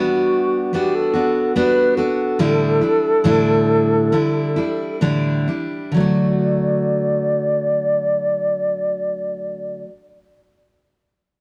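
Pop with a sunny, easy-going mood, this short excerpt pairs a wooden-headed alto flute carrying the melody with a picked steel-string acoustic guitar in accompaniment, both up front across the whole clip, and the pace slows over the first 5.9 seconds. The flute is pure and expressive, with vibrato, tongued notes and rolled-off highs, while the jumbo guitar sounds full-bodied with audible finger squeak. A moderate plate reverb and a dark, warm production frame the move from Gmaj7 through A7sus4 to a settling D chord at 5.9 seconds.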